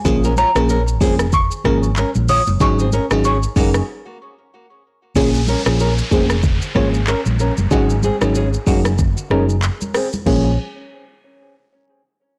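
Mellow and smooth, this afrobeats groove moves at 94 BPM in 4/4 with a swung sixteenth feel in B-flat minor, cut from a longer piece. A dark, round hollow-body short-scale electric bass sits up front with punchy weight, alongside an electronic, produced afro-pop drum kit with a deep kick, smooth hats, crash, handclaps, rim clicks and shaker, its snare softly clipped. A glassy FM electric piano with a bell-like attack and a noise layer comps through chorus and a low-pass filter, while a fingerpicked flamenco guitar plays a delayed, filtered riff and very quiet congas add thick-skinned, soft-handed texture. A woody marimba played with medium mallets carries the melody, with delay, until it drops out at 4.8 seconds after a break begins at 3.9 seconds. From 5.2 seconds a filter sweep and an electronic downlifter shape the second half as the harmony keeps cycling between Bbm7 and Ab7sus4, all within a light digital ambience and a blown-out, overdriven mix.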